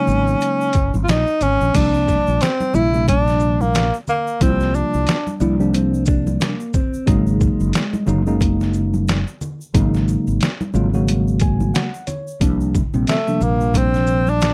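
A breathy tenor saxophone opens this cool jazz-hop excerpt over a worn, slightly out-of-tune tine electric piano, the two sounding together on an Ab9sus4 chord before the harmony moves to C9sus4. Almost at once, a gritty, pitched-down sampler-style trip hop drum kit arrives up front. Its thumpy kick, medium-tuned snare, hi-hat, shaker and crash carry overdrive and compression at 90 BPM with a loose 16th-note swing. Beneath it sits a dark, round fretless bass with analog chorus, while bright congas and egg shaker add a quieter layer of live-room percussion. The whispered, intimate saxophone, with vibrato, scooped notes and a soft attack, stops at 5.4 seconds, when a clean, fingered electric guitar line with subtle chorus enters. The electric piano plays a fill from 11.1 seconds, and the saxophone returns at 13.1 seconds for a short jazz-style solo over C9sus4, all in a dry, close mix with the feel of a 1970s studio session.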